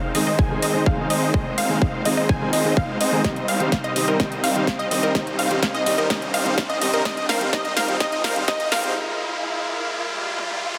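This emotional, euphoric festival progressive house build-up in F minor at 126 BPM opens on huge, detuned supersaw chords playing a riff through a sweeping low-pass filter, with sidechain pumping and dub echo. They are joined at once by bright arpeggios from a unison pluck and a thick, saturated saw bass sitting very quiet underneath. A dark, mellow grand piano with audible action noise adds pumping, echoing accompaniment, while a very quiet chorused pad holds slow-attack sustained chords and a faint electronic riser hovers beneath. The big-room kit brings a punchy layered snare, metallic hats and toms, with drum fills running through much of the passage, and an electronic kick sits up front. At 3.8 seconds a catchy, evolving plucky lead enters in the background with dub echo, as the harmony moves from Ab through Cm to Fm. Most parts stop around 8.9 seconds, leaving pad, kit and riser to carry a final swell, all bathed in a long ambient reverb and a dense, heavily limited master.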